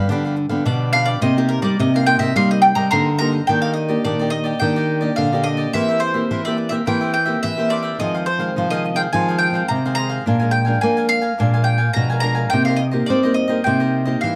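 Crisp, bright cavaquinho and a full-bodied, fingerpicked classical nylon-string guitar with audible finger squeak open this nostalgic, yearning samba at 106 BPM in C minor, underpinned by a small-sounding fingerpicked nylon-string bass line, before an up-front, round mandolin picking the melody on double strings with plate reverb enters at 0.7 s, the key turning to Eb major at 3.5 s over seventh chords in a dark, warm small-room mix.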